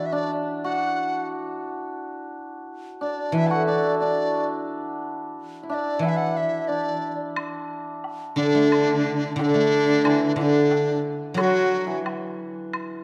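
A reedy large dizi with vibrato and a buzzing membrane carries the melody up front, over a shimmering hammered dulcimer second line and silvery guzheng accompaniment played with fingerpicks, in this festive, pastoral excerpt of Chinese traditional chamber music in D gong mode at 89 BPM in a rubato 2/4; a close woodblock enters at 7.4 seconds and a smooth, boxy bowed cello joins in the background at 8.4 seconds, and the ensemble sits in a moderate scoring-stage reverb with a dark production.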